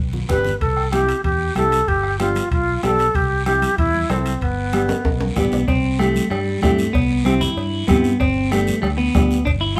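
A moderate, roomy studio reverb surrounds this festive, danceable cumbia excerpt in C major at 190 BPM, where a fingered electric bass with an amped tone and a full-bodied, fingerpicked nylon-string guitar ride over a percussion bed of soft-beater bombo, thick-skinned congas, a raspy guiro, and ringing timbales and cowbell set back in the mix. Up front, an airy, reedy alto flute with vibrato carries the melody until 5.4 seconds. A drum fill then hands over to a bright, twangy clean electric guitar that takes a compressed, picked solo from 5.7 seconds to the end.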